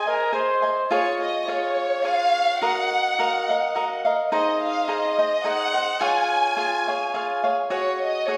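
Festive and romantic, this mariachi-style Mexican folk piece moves at 106 BPM in a lilting 3/4 with a light swing, set in Db major. A dark, woody chamber violin section carries the bowed melody with vibrato throughout, over a crisp, mellow picked cavaquinho accompaniment. A clear, classical-style trumpet adds a brief second line that ends at 0.9 seconds, and the whole performance rings in a lush concert-hall reverb.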